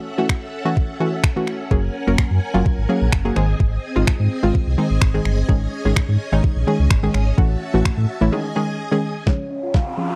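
This upbeat, carefree dance-pop excerpt at 127 BPM in straight 4/4 opens with a round, full-bodied analog pluck carrying the accompaniment, its sawtooth tone layered with noise and shaped by chorus, a low-pass filter and sidechain pumping. Behind it, a shimmering vintage string machine holds sustained violin chords with ensemble chorus and the same pumping. A clean 12-bit drum machine sits up front with finger snaps, a thumpy kick and a medium-tuned snare, tape-tinged and re-recorded in a large room. At 1.7 seconds a deep sine sub bass with an octave enters, pumping beneath chords that move through A6, Gbadd9, Ab and Dbsus2/Ab before a break at 8.3 seconds on Absus4. At 9.3 seconds a drum fill lands on Dbmaj7 as a dark, triangle-based lead with a sub octave, phaser and vibrato appears, joined by a woody FM mallet pluck in the background and an electronic riser. The dry, close recording has the feel of a 1970s studio.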